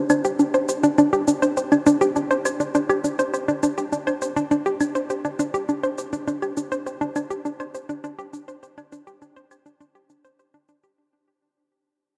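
A hollow, bouncy square-wave pluck sits up front, playing a detuned, wave-folded riff between D4 and C5 with a fast attack and short decay, its mellow tone thickened by a sub octave and a noise layer and carried on chorus and analog delay. Softer electronic cabasa and claves run alongside it through analog delay, all sunk in a huge ambient reverb that gives this sequencer-driven space music an expansive, cosmic feel. Cut from a longer piece and tuned to A4 = 444 Hz, it begins fading out at 1.6 seconds and keeps fading until it ends at 11.0 seconds.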